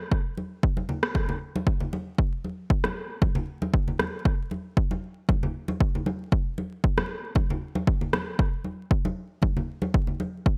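A bright digital sheen in the manner of 1980s production sits over a bed of vinyl crackle, all heard within a small room ambience. This short house fragment, cut from a longer piece, has a smooth, late-night mood and a lightly swung sixteenth-note feel in common time. An electronic kick drum with an analog, punchy character and a gritty overdriven edge sits up front and carries the groove from the very start. Ringing acoustic congas, recorded close and dry, join almost at once and stay prominent beside it. An overdriven electronic rim click enters at 1.0 seconds, its snap wrapped in gated reverb, and drops out at 8.2 seconds, leaving kick and congas to finish the passage.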